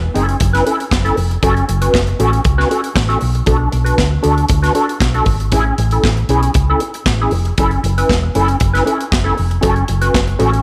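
A dry mix carries this short disco cut at 117 BPM in F# minor, with a driving, sultry mood. A mellow, clean, fingered electric guitar sits up front with wah and spring reverb over a progression through F#m7, Bm7 and Amaj7, while a round, hollow-body short-scale bass adds a dark, amped low end. A punchy, mid-forward acoustic drum kit with a medium-tuned snare, hi-hat and handclaps enters at 0.2 seconds, its top end rolled off.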